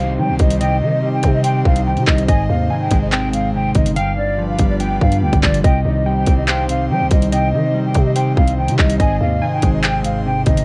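A hard-clipped kick sits up front in the electronic drill drum kit, which enters at 0.4 s with metallic hi-hats and handclaps in a half-time feel at 143 BPM. This short, ominous and cold cut of drill hip hop sits in C harmonic minor, moving from Cm through Ab and G7 back to Cm before landing on Ab at 9.0 s. A breathy concert flute carries the melody with a hollow, close-miked straight tone under a low-pass filter and delay, while a warbly, lo-fi pluck traces a second line in the background, its detuned square and sawtooth layers treated with chorus, delay and a filter sweep. A dark, clean, fingered electric guitar supplies the accompaniment, and an airy pad holds sustained chords with a slow attack, long release and chorus shimmer. Underneath, a growling, buzzy 808-style bass with a fast attack and decaying tail anchors the low end, and a very quiet downlifter sounds in the opening 2.3 s. 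The whole recording is coloured by a worn, drifting cassette-tape ambience that gives it an aged character.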